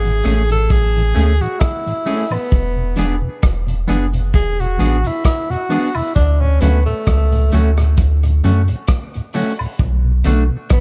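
A clear tenor saxophone carries the melody throughout this short excerpt of sunny roots reggae, its light vibrato and smooth top colored by tape echo. Beneath it, a soft dub sub bass sits deep, round and up front, while a crunchy breakbeat drum kit with a tight kick, hi-hat and rim click adds gritty, saturated texture with a rolled-off top. A mellow tonewheel organ with a flute-like tone and audible key click turns through a slow rotary speaker, and a clean, twangy electric guitar picks out scooped accompaniment. Tambourine and woodblock stay in the background at a relaxed, lightly swung pace. The harmony moves from Amaj7 through E7 and Dmaj7 to Bm7, all wrapped in a dark, small-room production.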